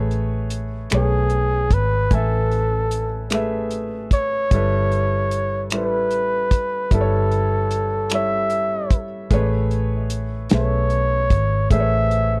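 A close-miked flugelhorn carries the melody from 0.9 seconds, its soft attack, light vibrato and tape echo giving this tender, jazz-tinged solo a gentle glow. Underneath, a slow six-eight R&B groove at 50 BPM in A major moves from Amaj9 to G69 and back, with a natural-sounding baby grand piano in accompaniment, a dark, round, foam-muted electric bass, and a dry, damped 70s drum kit of tight kick, snare, hi-hat and finger snaps. The close, dry studio sound feels intimate and warm, and this is a short excerpt cut from a longer piece.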